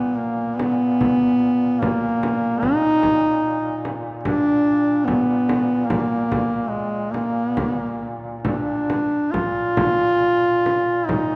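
Caucasian folk lament, mournful and longing in a free rubato 4/4, in which a mellow duduk with a smooth top carries the melody up front between Ab3 and F4, a second, warm duduk sounds distant and roomy as it holds a Bb2 drone with vibrato and scooped notes, and a deep, large frame drum with a vintage, band-limited tone and hard hands joins at 0.6 s, all set in a moderate church reverb that gives this short excerpt a spacious air.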